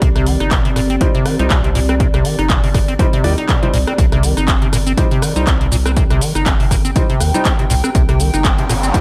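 A squelchy, resonant acid bass riff with chorus and analog delay drives this gritty acid house excerpt at 121 BPM in C minor, riding a 16th-note swing over a punchy electronic kick, a booming analog drum machine with metallic hats, handclaps, rim clicks and shaker, and a round, deep analog bass that pumps with the sidechain. A warbling, lo-fi pad adds nostalgic haze through its chorus and phaser, while worn, vintage grand piano stabs enter at 1.0 seconds with analog delay. A brief electronic riser arrives at 8.2 seconds, all set in light digital ambience.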